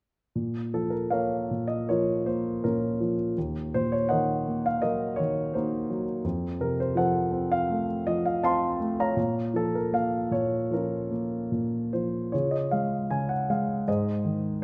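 Wistful and reflective, this short classical excerpt features a warm grand piano alone, played with lyrical rubato in 4/4 around 72-85 BPM in B-flat harmonic minor. The piano sits up front with short sustain and light reverb. It moves through Bbm, Ebm and F before returning home, then turns toward Db and Ab at 12.3 seconds, shortly before the passage ends at 14.6 seconds.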